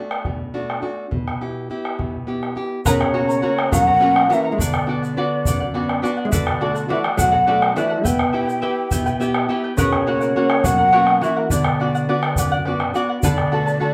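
This Andean folk piece, cut from a longer performance, has a wistful yet festive mood and a straight 6/8 feel. It opens with a classical nylon-string guitar, its fresh strings fingerpicked with audible finger squeak, over a round bombo that sounds up front yet carries the echo of a large room. At 2.9 seconds the rest of the ensemble arrives: a large wooden quena carries the melody with a breathy, mellow, hollow tone, soft attacks and gentle vibrato, set back at a slight distance. Beneath it, a dark, clean, compressed hollow-body electric guitar picks a low second line. A fingerpicked charango adds a shimmering layer from its double strings, some doubled at the octave, and a grainy tube shaker sits close and dry. The harmony circles steadily over a held bass note, and the whole band plays live in one room with a moist studio ambience.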